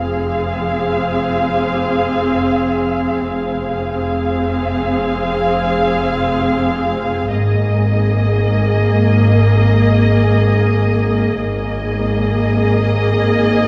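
Heard from further back in a reverberant scoring stage with a 1.8-second decay, this uneasy, eerie cinematic suspense cue, cut from a longer piece, unfolds in free time with tuning set to A4 = 439 Hz. Up front, a muted viola section gives soft-attack accompaniment beneath a veiled, distant violin section carrying the melody, while muted cellos with light vibrato sit in the background and a lush, bowed double bass section anchors the low end. The harmony rests on F minor before moving to G# suspended second at 7.3 seconds, with all four con sordino sections playing through the full 13.7 seconds.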